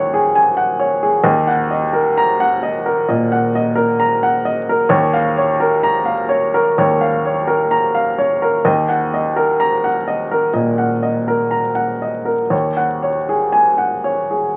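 Neoclassical minimalist piano in Eb minor, this short excerpt from a longer piece moves at a slow 64 BPM in 4/4, its beats uneven and phrased with rubato for a wistful, intimate mood. A solo baby grand piano carries everything from 0.0 to 14.6 seconds, ranging from Eb2 up to Bb5 with a warm, natural tone, short sustain and an up-front presence. The harmony circles over an Eb foundation, opening on Dbsus4/Eb, settling into Ebm at 1.3 seconds, shifting to Bbm/Eb and back to Ebm before returning to Dbsus4/Eb at 12.5 seconds. A moderate club reverb lends the room a modest sense of space. The sound carries the patina of a very old 78 rpm record, with vinyl crackle coloring the intimate playing.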